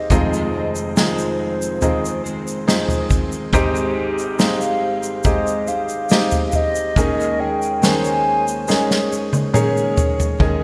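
A hollow, woody synth lead with a clarinet-like tone opens this short pop ballad fragment, carrying a tender melody with vibrato and a chorus shimmer over a felt-muted upright piano whose soft, intimate sound lets its hammer action be heard up close. At a heartfelt 70 BPM in straight 4/4, the harmony moves from Fm7 to Abmaj7 and on to Eb7sus4. Behind them, a fingerpicked jumbo steel-string acoustic guitar with fresh strings plays full-bodied arpeggios through an ensemble chorus, set back in the mix. An acoustic drum kit played with bundle sticks sits up front, its tight kick, medium-tuned snare and toms wrapped in gated reverb, while a grainy, close egg shaker adds a dry sparkle. A drum fill from 8.7 to 10.4 seconds rounds out the passage, all within a moderate plate reverb and a bright 1980s-style digital production.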